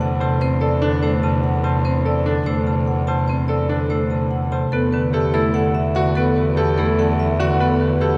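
Meditative and hypnotic, this fragment of classical minimalist pattern music circles in 7/8 with a straight feel. A metallic, ringing vibraphone carries the melody with medium hard mallets and its motor off, its tone dark and smooth. Beneath it, an up-front marimba with a vintage, band-limited character plays the accompaniment, while a single bowed cello holds a rich, focused bass note with vibrato. A brilliant concert grand piano enters at 0.2 seconds with arpeggios, adding sparkle over its deep low end. The pattern repeats as the harmony moves from Dadd9/E to Em9 at 4.7 seconds, all of it set in a vast, echoing cathedral space.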